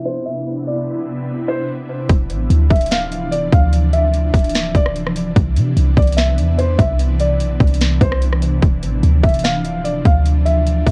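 A felt-muted upright piano opens this melancholic, spacious cloud-rap excerpt, its soft, boxy melody sitting high over an ethereal pad of detuned, chorused chords as a filter sweep runs through the first 2.1 seconds. The piano is dulled by a low-pass filter, cassette tape and analog delay, while the pad warbles with a vintage, airy sheen, its sidechain pumping and built-in reverb lending a drifting quality. At 2.1 seconds a trap drum kit and a clean 808-style bass arrive together, settling into a half-time feel. The drums are up front and overdriven, with a hard-clipped kick, sharp snare, metallic hats and a rim click. The deep, boomy sine bass decays beneath them as the harmony alternates between Cmaj9 and Dm9. The whole mix has the dry, lo-fi character of a home cassette recording.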